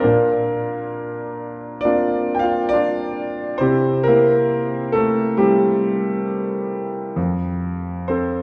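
Lyrical classical solo piano in a wistful, melancholic mood, this brief excerpt from a longer piece unfolds in a rubato 4/4 on a concert grand that sounds warm and boxy, with deep bass, long sustain and an up-front presence, moving through Bbadd9, C and F within a moderate, church-like hall reverb.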